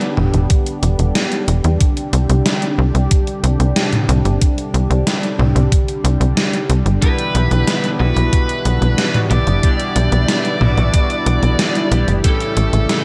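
A smooth, detuned analog pad with chorus and sidechain pumping opens this cinematic, driving synthwave excerpt alongside a gated 80s digital drum machine of hi-hat, snare and toms re-recorded in a large room, soon joined by a thumpy electronic kick and a tight, nasal sawtooth sequencer bass up front, until at 7.0 s a dark, high-gain lead guitar with distortion and tape echo enters with a glossy, retro chorused polysynth playing stabs.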